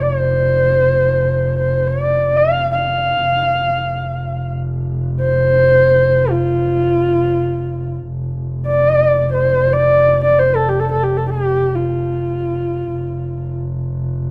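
A bowed horsehead fiddle and a bowed double bass sound together from the opening moment of this Mongolian folk passage, cut from a longer piece and played in free time with tuning at A4 = 439 Hz. The fiddle carries the melody between F4 and F5, its horsehair strings giving a dark, woody, husky voice shaped with vibrato and portamento, and it sits up front. Beneath it, a single bass player holds a drone on F1 with a focused tone and smooth top, also touched with vibrato. The mood is proud and galloping, and the same section is heard twice, with the second pass starting at 8.1 seconds. The music slows from 12.9 seconds; the fiddle stops at 13.6 seconds and the bass sustains a moment longer to close. Light studio reverb surrounds both instruments, and the mix has the rough feel of a home demo.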